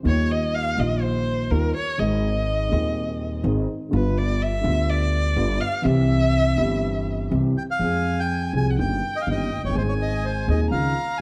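A dark, mellow baby grand piano opens this passionate, tense tango excerpt at 124 BPM with a rubato feel, joined by woody pizzicato upright bass and a distant, expressive bowed violin whose vibrato and portamento carry a solo until 7.8 seconds, when a reedy, boxy, up-front bandoneon, entering at 7.6 seconds, takes the melody over a Fm to Ab turn, all set in a moderate large-studio reverb.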